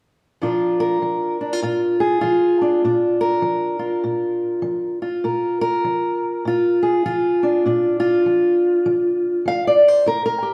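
Acoustic country blues with a soulful, rollicking mood, this excerpt moves at 100 BPM in 4/4 with a swung eighth-note feel, centred in Bb mixolydian. A single fingerpicked steel-string acoustic guitar carries the whole piece, entering at 0.4 seconds and playing until 10.5 seconds, ranging from Bb2 up to F5. The guitar sits up front with a boxy, parlour-sized character and the bright ring of fresh strings, and finger squeaks on the strings come through clearly. The performance has a live-in-the-room quality, set in a large studio space whose lush reverb hangs for about 1.2 seconds. The brief passage, cut from a longer piece, opens on a Bb chord.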